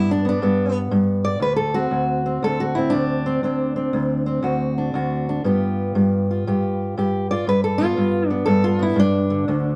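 A large studio reverb gives this live-in-the-room recording a spacious air around a dark, up-front fingerpicked steel-string acoustic guitar, with finger squeak audible on the strings. It is a soulful, laid-back acoustic country blues at 119 BPM in 4/4 with a swung eighth-note feel, the guitar playing alone across a span from D2 to D5. The short passage moves from G to D7 at 1.4 seconds and on to G7 at 5.5 seconds.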